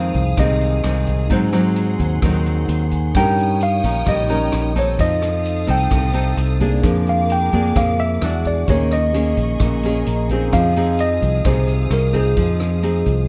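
Bossa nova in F minor at 130 BPM, this intimate, wistful cut from a longer piece sets a worn, slightly out-of-tune tine electric piano melody over fingerpicked nylon-string guitar, a punchy, up-front fingered electric bass, a dark vibraphone ringing in the background with fills at 2.5 and 9.8 seconds, a lush bowed violin section holding sustained chords, a big-band drum kit with a boomy kick, hi-hat and rim click, and a grainy egg shaker, all in light reverb.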